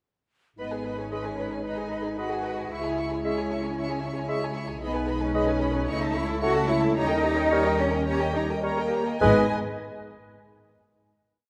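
A roomy scoring-stage reverb wraps this short, mischievous film cue in G# minor, moving at 103-116 BPM in a straight 4/4 from 0.6 s and settling on a final G# minor chord at 9.2 s. Lush violins lead with a rocking two-note figure over a second, more distant violin section and smooth background violas, while an airy flute ensemble doubles the tune at the octave and horns hold sustained chords. Rich cellos sing a melodic line above the even, sustained double basses, and from 1.1 s a bright oboe, dark clarinet and shadowy bassoon add sneaky after-beat chords in the background.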